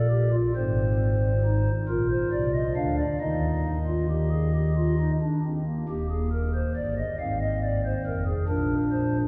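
Stately and joyful, this cut from a longer baroque-style three-part fugue in Eb major moves at a measured 45 BPM in a straight 6/8. A solo pipe organ on a stopped flute stop carries the voices, its soft, hollow tone and romantic voicing spanning Eb1 to F5 and sitting up front, even as the listener hears it from further back in a cathedral with a 4.6-second reverb. The harmony moves through Bb, Ab, Bb and Eb before a second section at 5.9 seconds turns to Fm7/Ab and settles on Bb.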